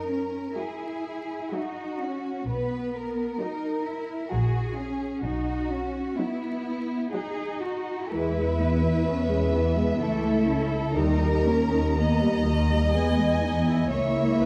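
This is a classical slow romantic movement for string orchestra, melancholic and solemn, moving in a rubato 3/4 at roughly 57-66 BPM in B major, tuned slightly low at A4 = 437 Hz. From the start, a clear, even violin section carries a second line over the bass. Beneath it, the cellos sound rich and focused with a smooth top, and the double basses play warm and up front with a soft attack. At 0.6 s the melody enters in a higher violin section with expressive vibrato and a gentle onset, alongside a dark, intimate viola section in close accompaniment with light vibrato. Cut from a longer piece, the passage opens on F#7 and settles into B, then turns through E, A/C# and D# before ending on Emaj7 and A#dim/C#. A moderate scoring-stage reverb gives the bowed ensemble a lush bloom, and the mellow, shadowed production carries a layer of vinyl crackle.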